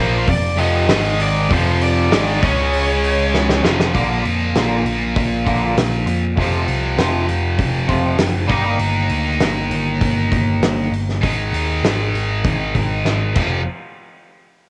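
A dark, distorted lead guitar line rides over a stack of bright overdriven and distorted guitar riffs and a round, punchy overdriven bass at the start of this angsty, dark quiet-loud alternative rock piece, joined at 0.3 seconds by a distant, roomy drum kit with a fat snare and dark cymbals; the lead and the quieter rhythm guitars fall away by 3.9 seconds as a clean, twangy chorused guitar picks out arpeggios until 8.8 seconds, leaving the up-front spring-reverbed guitar riff, bass and drums to carry the cassette home-recording sound.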